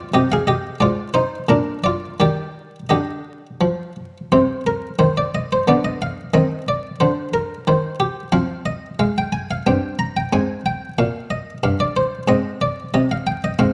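A buff-stop harpsichord carries this short classical piece alone, its plucked, muted tone sounding lute-like, dry and up front in the French style. The music is a baroque-style suite movement in triple time, played with a flowing, solemn rubato that lets the phrases breathe. It begins in a major-key setting before turning toward the minor at 4.3 s, where a second statement of the opening material unfolds with darker harmonies, including a lush Abmaj13 chord around 10.3 s. The harpsichord ranges from low G2 up to Bb5, filling the space of a moderate recital hall whose reverb gently surrounds the closely captured, detailed sound. A vinyl crackle sits beneath the performance, and the recording is cut from a longer piece, ending at 13.7 s.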